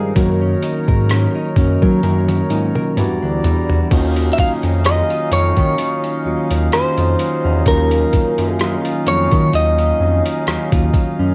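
A home recording on cassette with light reverb frames this slow, longing and sensual contemporary R&B excerpt in Eb minor at 64 BPM, its sixteenths lightly swung. A picked, compressed clean electric guitar carries the melody up front through analog delay until 10.4 s, over a mellow tine electric piano heard through its built-in speakers, a reedy, nasal hand-pumped harmonium holding breathing chords, and a direct-recorded guitar playing arpeggios in the background. Underneath, a smooth, detuned sawtooth synth bass with a moving notch sits up front beside a gritty, overdriven sampler-style drum kit with a thumpy kick and rim clicks that plays a fill from 2.0 to 3.9 s, as the harmony moves from Gb6 through Em9 to Ebm9.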